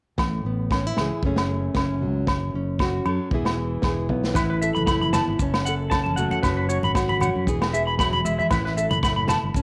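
This joyful, sunny highlife guitar band clip, cut from a longer piece, has the intimate character of a home cassette recording, with light reverb and small room ambience. At 115 BPM in 4/4 with a gentle swing on the sixteenths in A major, a full-bodied, fingerpicked nylon-string guitar sits up front. Beside it play a warm fingered electric bass, an acoustic vintage drum kit with a punchy kick and rolled-off top, and ringing agogo bells, with the guitar and drums carrying a cassette tape colour. The chords move through Asus2, F#madd9, F#m and E, and a drum fill at 4.1 s leads into the second section at 4.4 s. There a bright, twangy clean electric guitar enters up front with picked arpeggios treated with cassette tape and analog delay, while thick-skinned congas sit in the background and grainy maracas join in. The progression shifts to Asus2, F#m, Bsus2/F# and E before arriving back on Asus2.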